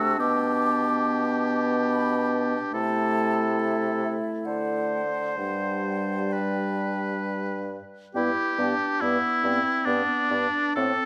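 This is a slow, romantic classical movement for wind quintet in G major, lyrical in mood, moving in 3/4 at roughly 63-73 BPM with a flexible rubato feel. The concert flute carries the melody high in its register with an airy, hollow tone, gentle vibrato and a soft attack. Beneath it, the oboe sings a close-miked second line with clarity and vibrato, set up front in the blend. The clarinet adds punchy accompaniment in its lower range, while the French horn lends a warm inner voice touched by light vibrato. The bassoon anchors the bass with a distant, roomy sound and its own vibrato, the harmony moving from G/B through Am/C and D7 before settling on G at 5.4 seconds. A moderate concert hall reverb surrounds the ensemble in this short passage cut from a longer piece, with the opening phrase returning at 8.2 seconds.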